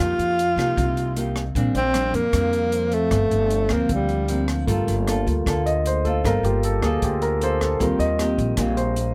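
A breathy, whispered tenor saxophone with mellow vibrato and a soft attack carries the melody of this intimate, wistful bossa nova until 4.5 seconds, before the concert grand piano takes a solo from 4.7 seconds, showing its deep bass and long sustain. Fingerpicked nylon-string guitar with audible finger squeak, a woody, thumpy pizzicato upright bass and an open jazz kit of hi-hat, rim click and boomy kick accompany, with the drums entering at 0.2 seconds. The harmony moves through F9sus4, Bb69 and Gm11 to Gm9 and Eb6, in a dry, close sound cut from a longer piece.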